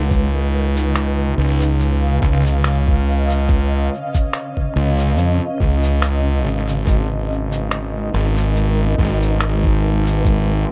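A blurred, slowly evolving granular pad and a fuzzy, up-front fingered electric bass open this meditative ambient dub fragment, cut from a longer piece, moving at a relaxed 71 BPM in 4/4 with a gentle swing on the sixteenths. The pad, built from detuned unison triangle tones with a slow attack and long release, hangs in a cloudy haze of its own reverb, holding sustained chords that sit on C#7 before shifting to G#m7 at 6.9 seconds. Beneath it, the bass is warm and overdriven, played in a low register and standing up front in the mix. An electronic kick drum thumps along, pitched down, muffled and compressed in a sampler style, with a roomy, re-recorded grit from its overdrive. A quieter electronic shaker and finger snaps share that darkened, saturated treatment and trail off into dub echoes. The whole mix feels spacious and echo-heavy, with a digital ambience and a faint vinyl crackle around the parts until they stop near 10.7 seconds.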